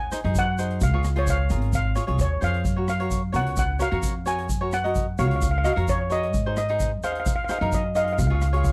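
A straight, bouncy 4/4 calypso groove at 130 BPM drives this festive passage in Db major, cut from a longer piece. A shimmering, metallic lead steel pan carries the melody, struck with hard rubber sticks and placed up front with a slapback echo. A woody pizzicato upright bass with gut strings sits prominently underneath. A crisp, picked cavaquinho supplies the accompaniment, and a street-band drum kit with hi-hat, rim click and a boomy kick adds an airy feel. A grainy, band-limited egg shaker lies low in the mix. The harmony moves from Ab7 to Db, rests on a long Gbmaj7, then returns through Ab7 to Db at 8.2 seconds, all captured in a dry, close 1970s-style studio sound with small room ambience.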